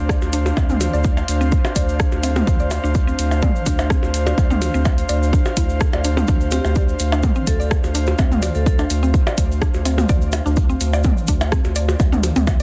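A dense, heavily limited mix with light reverb frames this hypnotic, sparse minimal techno excerpt at 126 BPM in D minor, sitting on a Dm7 chord, where a punchy overdriven electronic kick and a deep, saturated sine sub bass sit up front, the sub bass pumping under sidechain along with an airy, breathy pad and a woody, round FM mallet-like synth pluck riff carrying chorus and dub echo, while a house drum kit's bright hi-hats and rim clicks, a grainy cabasa and tape-warm electronic percussion blips and toms fill in the swung groove, and a metallic, ringing vibraphone with fast motor vibrato and dub echo appears briefly in the background from 6.5 to 8.7 seconds.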